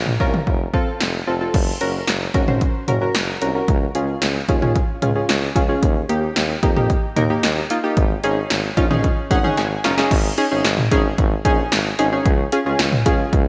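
A clear, punchy tuba with light vibrato carries the bass line in this nocturnal, cool synth-pop excerpt at 112 BPM in a straight 4/4, moving through chords from F and Gb to Db, Eb and Absus4. Up front, a punchy analog drum machine with gated reverb drives kick, snare, hi-hat, toms and crash, while round, chorused analog keys built from pulse and sawtooth waves, with fast attacks, decaying notes and a filter sweep, fill out the harmony. A keys fill at 9.0 s and a drum fill at 9.6 s lead into a new section at 10.1 s, and the mix sits in a lush hall reverb with a bright 1980s-style digital sheen.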